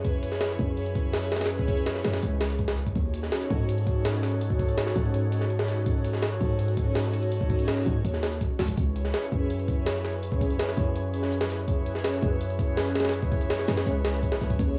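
A straight 4/4 jungle beat at 165 BPM drives this dark, atmospheric drum and bass excerpt in C# minor. Its gritty, pitched-up sampler-style kit sits up front, with a thumpy kick, a high-tuned snare and hi-hat, all compressed and tape-warm. Beneath it, a deep, boomy 808-style bass with a fast attack and a decaying sine tone anchors the low end, while an airy, breathy pad holds sustained chords with chorus and a cassette haze, moving from C#m7 to D#m7b5 at 3.0 seconds and back at 8.8 seconds, all set in light reverb and small-room ambience.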